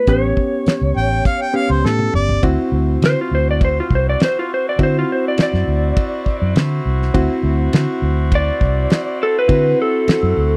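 A slightly broken-up, compressed electric slide guitar leads this laid-back, gritty straight-eighth soul blues at 102 BPM in D mixolydian, taking a solo from 2.4 seconds over a barky, reedy electric piano, a round, punchy foam-muted fingered bass and a dark, damped 1970s drum kit with a fat snare and tight kick, while an overdriven harmonica with scooped notes and light vibrato slips in at 1.0 seconds shortly before a drum fill at 1.8 seconds, and a clear, tight horn section sits low in the mix holding sustained chords beneath the solo, in a dry, close 1970s-style studio sound cut from a longer piece.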